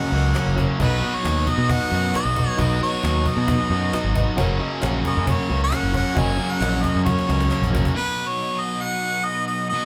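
Classic rock with a gritty, brooding mood, cut from a longer piece and played by a band live in one room with moderate large-studio reverb. An up-front, clear harmonica with light vibrato carries the melody over two overdriven, picked guitar riffs, one from a cranked stack sitting in the background. A growling fingered bass, a snappy, close cajon struck with hard hands and very quiet, crisp group handclaps round out the rhythm section, while a woody, slightly detuned upright piano accompanies and a lush, vintage string machine with slow attack sustains chords. A cajon fill runs from 7.1 to 7.9 seconds, by which point the piano, second guitar, bass, claps and cajon have fallen away, leaving the harmonica, stack guitar and string machine to carry on until 9.8 seconds.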